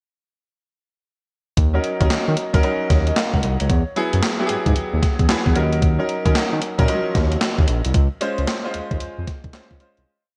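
A gated 1980s digital drum machine drives this slick, punchy new jack swing piece, its hard-swung beat sitting up front with a thumpy kick, hi-hat, and a gated-reverb snare layered with handclaps, all roughened by a gritty 12-bit sampler edge and the sense of a large room. The drums and a smooth synth bass enter together at 1.6 seconds. The bass blends sawtooth and square tones with a fast attack, sustained notes and vibrato, playing a bouncy, mellow swung funk line dotted with muted ghost notes. A clear concert grand piano, polished and present with a deep low end and short sustain, adds syncopated chord stabs in drop-2 voicings, grace notes and brief fills, all lightly shimmering with analog chorus. The whole short verse rides a bright, light-reverb digital production over a progression moving from Ebm7 to Eadd9, back to Ebm7 and on to Dbmaj7, and the piece fades out from 7.9 seconds to its close.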